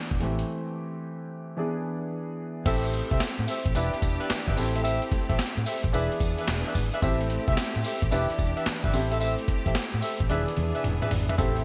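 Confident and punchy, this new jack swing R&B excerpt moves at 110 BPM in A minor with a swung sixteenth-note feel, opening with a warm grand piano touched by subtle chorus, a dark, round, foam-muted electric bass, and a gritty, compressed sampler-style drum kit with a thumpy kick, high-tuned snare, handclaps, tambourine and gated reverb, set up front, with a break from 0.5 to 2.7 seconds. At 2.7 seconds a lush, bright string section enters with sustained chords in the background alongside mellow, jazz-style horn stabs carrying light vibrato and digital delay, as the harmony cycles between Am7, Em7 and E7. A drum fill at 10.3 seconds rounds out the bright, 1980s-style digital production with its light digital ambience.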